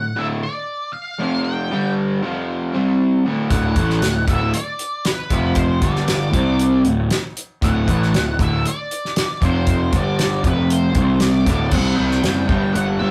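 Classic rock with a swaggering, confident strut, this short excerpt moves at 117 BPM in a straight 4/4, built on a chord cycle of D5, F5, G5 and C5 power chords. From the start, two overdriven rhythm guitars drive the riff, one crunchy and the other compressed and tucked into the background, while an octave-fuzz lead guitar carries the melody up high through wah and distortion. At 3.5 seconds a growly, fuzz-drenched picked bass pushes up front alongside a damped 70s drum kit, whose fat snare, tight kick, hi-hat and dark crash cymbals sound dry yet airy and polished. Near the close, a brief new section shifts the harmony to C5 and then G5 as the excerpt cuts off. The whole sound has the rough, saturated feel of a rehearsal room, with a moderate studio reverb adding a little space.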